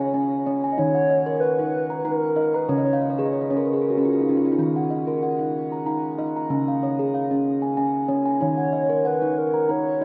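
A hollow, woody clarinet-like synth lead and a round, ringing steel tongue drum open this meditative world excerpt together, the drum struck with firm rubber mallets and sitting up front as it spins arpeggios in Eb minor at 94 BPM in a gently swung 3/4. The synth lead's soft, vibrato-tinged melody drops out at 3.3 seconds while the drum plays a fill from 2.7 to 4.6 seconds, then returns at 8.4 seconds, both parts trailing shimmer reverb and tape echo. The hypnotic, gentle mood is framed by a dark production with a wet echo-chamber reverb.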